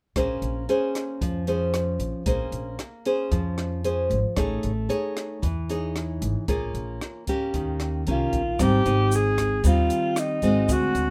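A lightly reverberant, sunny and breezy bossa nova fragment at 114 BPM, cut from a longer piece, where full-bodied fingerpicked nylon-string guitar with audible finger squeak and woody pizzicato upright bass ride over a dark, smooth cocktail drum kit of hi-hat, punchy kick and rim click through chords such as Bbm9, Amaj7#11 and Abmaj7, before a distant, breathy alto saxophone with vibrato and scooped notes enters up front at 8.1 seconds and a grainy, bright tube shaker joins in the background at 8.6 seconds.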